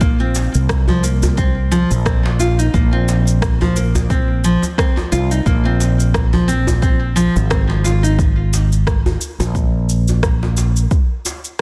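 Meditative and hypnotic, this short excerpt from a longer organic downtempo piece moves at 88 BPM in 4/4 with a gentle 16th-note swing, resting on a Bbsus2 chord. Up front, a full-bodied, fingerpicked nylon-string guitar plays delayed arpeggios until 8.2 seconds, over a dark, round fretless electric bass with sidechain pumping and a deep, overdriven electronic kick. Layered, overdriven electronic cabasa and rim click and a hard-hand djembe with metal rattles, entering at 0.4 seconds, fill out the groove in light reverb, with a dense, heavily limited modern master.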